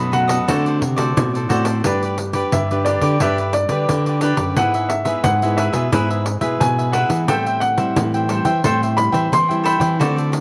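Playful and festive, this short excerpt blends samba and choro in G major at 88 BPM in straight 4/4. A baby grand piano with a natural, short-sustained tone carries the melody between D5 and C6, taking a solo from 1.9 seconds to the end. Beneath it, a bright, crisp cavaquinho is picked in accompaniment, while a fingerpicked nylon-string guitar sits in the background with a classical tone. A second nylon-string guitar plays the bass line with a deep classical sound and audible finger squeak, and a jingly pandeiro, close and dry, keeps the percussion going from 0.1 seconds. The harmony moves from D7 to G, then through E/G# to Am7, all set in a moderate plate reverb that gives the ensemble a gentle sense of space.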